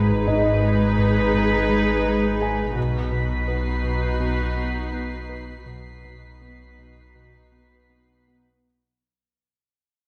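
A soft-attack violin section holds a pure, floating melody on a single note, B4, over dark, intimate violas, close cello and double bass sections, a fat, detuned analog synth bass with a saturated filter sweep, a deep sine sub bass drone and a short-sustain grand piano texture, all moving from G#m to B in this uneasy, ominous suspense cue at 83 BPM. At 2.8 s a second, much quieter violin section enters with a sul tasto texture near the top of its range. The whole passage sits in a wet recital-hall reverb and fades out across its 8.6 seconds.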